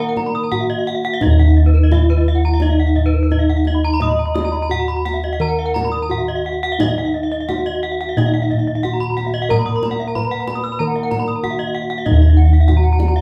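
A straight 4/4 pulse moves between 86 and 96 BPM in this hypnotic, brilliant stretch of Balinese gamelan in Eb pelog, cut from a longer piece. Up front, close and dry, the bossed gongs carry the bass with a full, round, beating tone. Above them, a bronze metallophone struck with a wooden mallet sings the melody, its paired tuning producing shimmering beats. Two more metallophones, played with horn mallets, spin bright, airy arpeggios higher still. In the background, a darker, smoother metallophone gives a low accompaniment that drops away after 1.2 seconds and returns at 6.8 seconds, while a tight, distant kendang taps out percussion as if from a large room. The ensemble plays live together in one room under moderate studio reverb.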